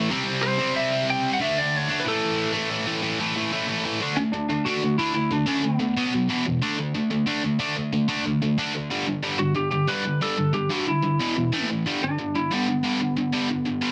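A dense, heavily limited modern master with light reverb frames this rowdy, upbeat punk excerpt at 184 BPM in a straight 4/4, with chords moving through power shapes like D5, A5 and G5. An overdriven, double-tracked electric guitar sits up front, its bright picked riff running from E2 to D4 for the full 13.9 seconds. A twangy, slightly broken-up lead guitar, compressed and fed through digital delay, picks a melody from 0.4 seconds, drops out around 6.4 seconds and returns at 9.4 seconds.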